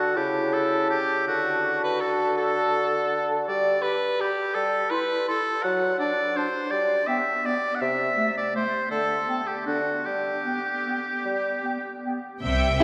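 Heavy cathedral reverb fills this church or concert-hall recording of a festive, sweeping orchestral ballroom waltz in G major, moving in 3/4 at 143-176 BPM with a rubato feel. From the opening, a clear oboe with light vibrato sits up front among the woodwind second lines, joined by a smooth-topped clarinet and a pure, soft-edged flute ensemble in the background, while a mellow solo bassoon supplies the low accompaniment until 11.6 s. At 12.4 s the bowed strings arrive just as the fragment is cut: a rich violin section carries the melody, a lush viola section accompanies, and a focused cello section and a double bass section anchor the bass.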